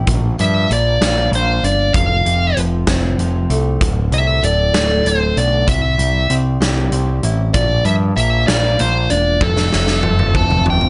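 Quiet-loud alternative rock in 6/8, this brooding, cathartic passage is cut from a longer piece. A dark dreadnought acoustic guitar fingerpicks arpeggios beneath a growling, overdriven electric bass that sits up front with a warm tone, taken both direct and amped. A huge arena drum kit enters at 0.1 seconds, its big-room sound built on a punchy kick, a medium-tuned snare, hi-hat and toms. From 0.4 seconds a smooth, dark lead guitar carries the melody, picked and overdriven with a slapback echo. The harmony moves through Bb6, F, D5 and C under light reverb and a soft-edged top end, and a drum fill closes the section from 9.4 seconds.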